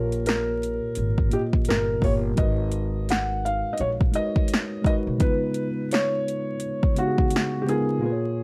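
An overdriven deep house drum kit sits up front in this short, nostalgic, melancholic lo-fi hip hop cut, with a deep kick, punchy snare and metallic hats running from 0.1 to 7.9 seconds at 85 BPM in 4/4 with a 16th-note swing. Above it, a felt-muted upright piano carries the melody through a low-pass filter and analog delay, its soft, boxy tone intimate enough that the action noise of the keys can be heard. A worn, slightly out-of-tune tine electric piano, also filtered and placed up front, supplies clean accompaniment across D#7/A#, G#m9 and C#9. A woody pizzicato upright bass with thumpy gut strings holds the low end until it stops at 5.2 seconds. Light reverb and a layer of vinyl crackle give the whole passage a dusty, lived-in feel, tuned slightly sharp to A4 = 441 Hz.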